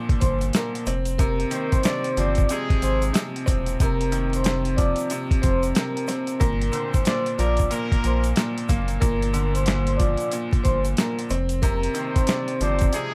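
A bright, woody upright piano opens this gritty, tough boom-bap hip-hop excerpt at 92 BPM with a swung 16th feel, joined almost at once by a round, deep analog bass, a thumpy, tape-warm sampler-style drum kit of kick, snare and hi-hat, a mellow soft-mallet vibraphone melody with slow motor vibrato, and a grainy tube shaker tucked in the background. From 1.5 seconds a clear, tight jazz trumpet section adds smooth stabs touched with tape echo. The harmony moves between Gm7 and Fm7 under light reverb and a layer of vinyl crackle.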